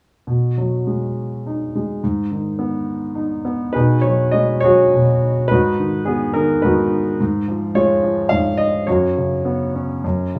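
A natural, up-front baby grand piano sits in light reverb and gentle studio ambience, giving this short classical passage an intimate, close feel. The piece is lyrical solo piano in B major, hopeful and warm in mood, moving at 105 BPM in 3/4 with uneven beats and a flexible rubato that lets the pulse breathe. The piano plays alone from 0.3 to 10.4 seconds, its writing ranging from F#2 up to E#5 with the instrument tuned to A4 = 435 Hz. A new section begins at 3.7 seconds, and the harmony passes through B6, G#m, G#m7 and C#/G#, settling on an F#sus4 that leaves the music suspended. Cut from a longer piece, it feels like a tender thought that is still unfolding.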